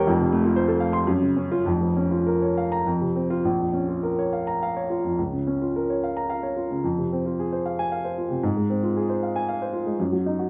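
Classical romantic character piece for solo baby grand piano in 3/4 with a rubato feel, bittersweet and brooding, its warm, natural tone placed up front across a deep-bass-to-high-treble range in a moderate large-studio reverb, moving from a brief opening passage into a second section at 3.4 seconds within this short cut from a longer work.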